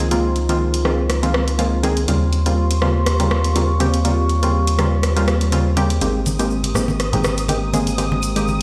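A round, deep analog bass sits up front with muted, detuned dub chord stabs carrying chorus and digital delay, over a moody, dark analog pad with chorus and phaser and a punchy analog drum machine of hi-hat and rim click, in this sunny, warm deep house excerpt; at 6.0 s close acoustic congas and a grainy tube shaker join in the background, and a silky, warbling string machine with ensemble chorus enters at 6.4 s, all heard as if played through a big sound system in a bare stone room.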